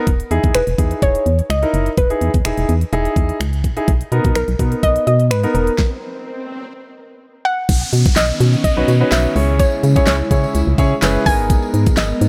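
Carefree and euphoric, this dance-pop excerpt moves at 126 BPM in a straight 4/4 in B major, opening on Emaj7 and Bmaj7 chords. An up-front electronic drum kit with a knocking kick, fat snare, crisp hi-hats, handclaps, finger snaps and crash cymbal drives it alongside a hollow, dark, organ-like FM bass, both running from 0.1 seconds to the end, with the bass pumping to the sidechain. A polished concert grand piano with deep bass, long sustain and audible action noise plays pumping accompaniment, while a soft, round pluck carries the melody through chorus and delay. At 5.8 seconds the groove stops and an electronic swell rises into the gap until 7.7 seconds, part of a swell and downlifter effect that runs to 11.5 seconds, when the music returns on a Badd9 chord, moving on to C#m and G#madd9. From there a breathy, mellow pad with chorus and sidechain pumping sustains chords in the background, a jingly, distant tambourine joins, and at 8.8 seconds the piano comes back in, all set in light digital reverb.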